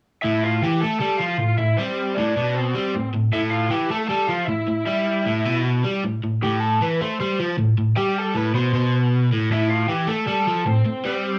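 Angry and urgent, this short punk excerpt charges along in a straight 4/4 drive, cut from a longer piece and sitting on a single A minor chord throughout. A crunchy overdriven electric guitar, double-tracked and up front, hammers out a picked riff in its low register from 0.2 to 11.4 seconds. Over it, a lead guitar played through a small cranked amp carries the melody across the same span, its picked, lo-fi tone gritty with overdrive and pushed close to the listener. Both guitars bear the hiss and softened edges of cassette tape. The whole thing sounds like a home recording in a small room, dry and immediate, with only a trace of room ambience around the players.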